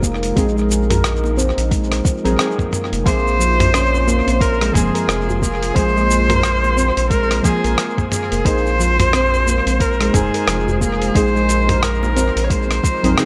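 An up-front, expressive kamancheh enters at 3.1 s with rich bowed vibrato and portamento over a hypnotic organic downtempo groove, where a ringing, meditative handpan plays arpeggios, a round, dark analog bass pumps beneath a soft electronic kick, a gritty sampler-style kit of hi-hat, rim click, shaker and toms sways with swung sixteenths, a very quiet djembe adds distant cracking hand hits, a deep wave-folded chord stab with chorus and phaser sits in the background, a smooth detuned pad holds sustained chords, and a bright bronze singing bowl rings faintly with slow beating, all bathed in spring reverb and tape echo.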